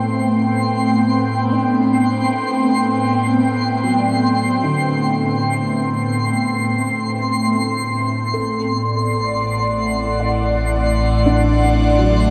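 In a straight 4/4 at 73 BPM, this serene, reflective ambient excerpt in A dorian sets an airy, breathy pad of sustained chords up front, with chorus, phaser and shimmer reverb, while a dark, thick-felt upright piano fades in through its background arpeggios with delay. A twinkling, sparkling granular texture hangs high above, and at 8.4 seconds a round, deep analog bass enters as the harmony moves from Am7 to Dadd9/A. The whole excerpt sits in a vast, echoing cathedral space.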